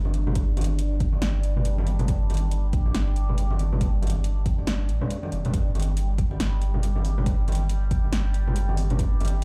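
Played through a big sound system in a bare room and drenched in large studio reverb, this cavernous, heavy deep dubstep excerpt moves at 139 BPM in a swung half-time feel over a G5 chord. A soft, round sub bass sits up front from the start, beneath a resonant sawtooth-and-sine drone whose moving overtones carry chorus, phaser and vintage 12-bit sampler grit, while an overdriven deep house kit adds a punchy snare and metallic hats. Ringing, distant congas played with soft hands trail dub echo, and an overdriven electronic kick with a deep thump enters at 0.4 seconds.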